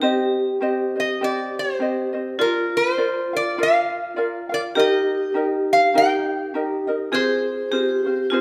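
A nasal, fingerpicked lap resonator guitar played with slide carries the up-front melody from 1.0 s in this dreamy, sunny Hawaiian excerpt in C minor at 101 BPM with a gentle swing, over a light, thumb-plucked ukulele accompaniment and a ringing second line on hard-mallet vibraphone with fast motor vibrato, all set in a moderate recital-hall reverb as the chords move from Cm through Bb and Eb to Fm.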